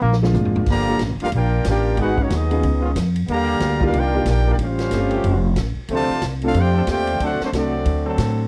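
A dry, close small-room sound with a 1970s studio flavor frames this dramatic, swinging big-band jazz passage, where a drum fill with a punchy kick opens the way for a trumpet section with light vibrato and slapback echo to carry the melody from 0.7 seconds, while a brilliant trombone section plays a tight second line, a second trombone section holds sustained chords in the background, an intimate grand piano with audible action noise comps, and a woody pizzicato upright bass sits up front.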